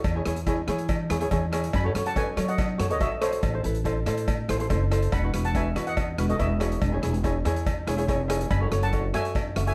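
Bouncy and festive, this calypso excerpt moves at 142 BPM in a straight 4/4, with a shimmering double-seconds steel pan carrying the melody over fingerpicked ukulele, a woody, growly pizzicato upright bass sitting up front, a street-band drum kit of hi-hat, boomy kick and rim click, and a metallic cowbell, all in a dark production with moderate reverb as the harmony cycles through C#m/E, F#madd9, Am and Esus2.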